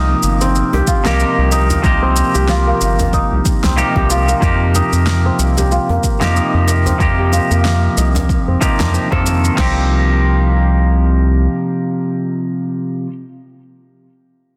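This earthy, mystical organic downtempo piece opens with a bright, clean semi-hollow electric guitar playing picked accompaniment up front, its compressed hollow-body tone pumping with sidechain and trailed by digital delay. Alongside it, a fingerpicked kora rings out crisp arpeggios through a low-pass filter and delay, with a filter sweep running across it until 9.6 seconds, while a round analog bass supplies a dark, fast-attack, sustained low end that also pumps. Within the first second, a layered electronic shaker and snare, a very quiet djembe with metal rattles, and a deep house kit with a deep kick, fat snare and crash cymbal join to shape a swung groove over Cm and F7sus4. The percussion drops away around 9.6 seconds, the kora and bass stop by about 11.5 seconds, and the guitar carries on alone until 13.1 seconds. A lush hall reverb and digital ambience surround the dense, heavily limited master.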